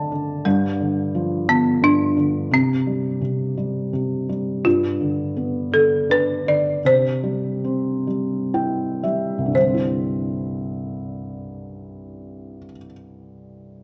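In a rubato 3/4 that drifts between 55 and 88 BPM and slows from 4.7 to 9.6 seconds, this tender, gentle lullaby in C major is cut from a longer piece, opening with a brief felt-muted upright piano fill before a folk marimba with hard mallets enters at 0.5 seconds to carry the melody. The marimba sounds woody, rustic and percussive, with dry hardwood bars sitting up front, while the piano's thick-felt accompaniment is mellow, intimate and close, with its action noise clearly audible and a second fill from 8.1 to 9.6 seconds. The whole children's piece floats in a recital hall reverb and carries the worn, warbling pitch drift of old cassette tape.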